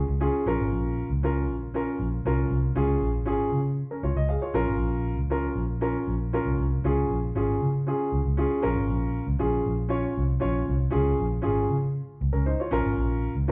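A dark, round, foam-muted electric bass sits up front from the first second, carrying this danceable, joyful excerpt of uptempo 1960s-style soul with an amped, vintage tone. A woody, natural upright piano joins at 0.2 s as close accompaniment, moving between Bbm and Db chords throughout the 13.5-second cut. The pair sounds like a band playing live together in a large studio with a generous wash of reverb.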